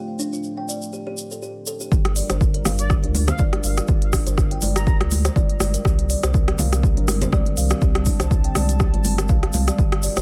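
Afro house at 122 BPM in G minor, with a 16th-note swing and an earthy, warm mood, this excerpt comes from a longer piece. It opens on a dark, detuned sawtooth pad holding Dm7 under a filter sweep, joined by a woody, hollow kalimba playing arpeggios through delay, while a grainy, bright egg shaker enters at 0.2 seconds. At 1.9 seconds the drop lands on Gm7. A punchy, layered electronic kick sits up front, a round sine sub bass pumps beneath it, and ringing, close congas stay in the background. An afro-pop drum kit with smooth hi-hats and rim clicks follows at 2.0 seconds. From 2.8 to 5.0 seconds a smooth, expressive sawtooth lead glides with portamento and vibrato through lush chorus and delay before the harmony moves to Cm7 at 5.9 seconds, all set in a digital ambience.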